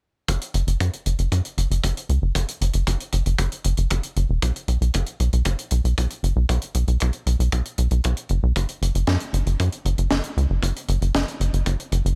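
A tight sequencer bass leads this short italo disco excerpt, its punchy sawtooth and square-wave tone plucked by a fast-attack filter that decays into a mellow, driving pulse sitting up front with a touch of tube saturation. A filter sweep moves across the analog synth bass throughout, adding a melodramatic, nostalgic sheen to the straight 4/4 groove. Underneath, an acoustic kick drum with a natural, small-room sound stays tight, with high-pass filtering applied. A tight funk kit supplies hi-hat and a high-tuned snare, recorded with the same intimate room character. All three parts enter together at 0.3 seconds, with the kick stopping at 11.8 seconds, the bass at 12.1 seconds and the kit at 12.2 seconds, and the dry mix carries little reverb.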